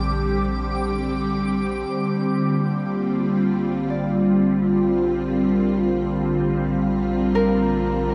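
This ambient excerpt opens on a Bb6 chord, voiced by an evolving wavetable pad, bright and up front, that morphs slowly through detuned unison tones shaped by ensemble chorus, phaser and shimmer reverb. Beneath it a round sub bass holds a deep Bb1 and fades in from 1.9 s. Far back, a fingerpicked Celtic harp rings out bright arpeggios through delay and shimmer. A twinkling granular texture sparkles high above until 1.9 s, and at 2.6 s a resonant drone with sweeping overtones enters in the background. At a slow 60 BPM in Bb major, the mood is weightless and warm, set in a huge, wet reverb space with a dark production.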